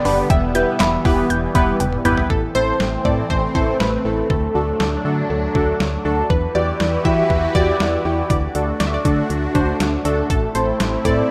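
Synth-pop at 120 BPM in a straight 4/4, this cut from a longer piece feels driving and cool, moving through Em, Am, D and Emadd9. A punchy, funky polysynth carries the melody between A4 and E5, its pulse-and-sawtooth tone given chorus and tape echo. Beneath it a lush, thick unison pad holds sustained chords with a slow attack and bright edge, treated with chorus and phaser, while warm analog keys with a detuned sawtooth sound and filter sweep supply accompaniment through the same effects. A soft, round pluck spins arpeggios high up, from G5 to G6, only until 2.2 seconds, and a dark, digital FM bass gives a solid, fast-attack low end. The detuned 8-bit drum machine sits up front with a thumpy kick, medium-tuned snare, handclaps, hi-hat and toms, all overdriven, throwing in a fill from 1.8 to 2.3 seconds before the second section begins, all set in a moderate hall reverb within a rough home demo mix.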